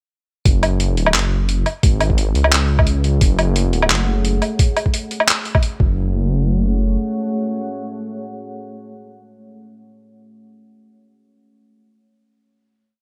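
A dry, bright digital sound with a 1980s cast frames this short, complete piece of half-time drum and bass, tense and heavy in mood, with a light swing to its sixteenths. From 0.5 seconds the drop hits all at once: a gritty, pitched-down electronic kick sits up front with a thumpy, tape-warm punch, joined by a sparse sampler-style kit of closed hi-hat, handclaps and a low woodblock, likewise compressed and pitched down. Underneath, a dark detuned saw bass rumbles in chopped phrases, its unison voices beating against each other with a fast attack and sustained body. At 3.6 seconds a deep, moody ambient pad fades in slowly, its wave-folded, ring-modulated tone softened by chorus and its own reverb and pumping with sidechain compression. The drums drop out before 6.0 seconds, and the bass rings on until 7.0 seconds into the final hit, which the pad then carries on, releasing slowly until the end at 9.5 seconds.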